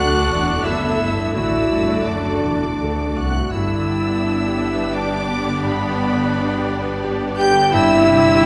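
A wet scoring-stage reverb places this bittersweet, sorrowful orchestral cue further back in the room, giving the short passage cut from a longer film score a spacious, emotional glow. Moving in a rubato 3/4 at around 85 BPM, it opens on D, shifts to G at 3.5 seconds, and settles on C over G near the end at 7.7 seconds. A lush, bowed violin section carries the melody high up with smooth vibrato, while a second violin line sits in the background with a soft attack and expressive shading. An airy, tongued metal flute and a distant, roomy clarinet play supporting lines beneath, and a mellow French horn section holds sustained chords. A clear grand piano with a deep, vintage bass and an even viola section provide accompaniment, a very quiet harp adds ringing fingerpicked arpeggios, and rich cellos and double basses anchor the bottom from a distance.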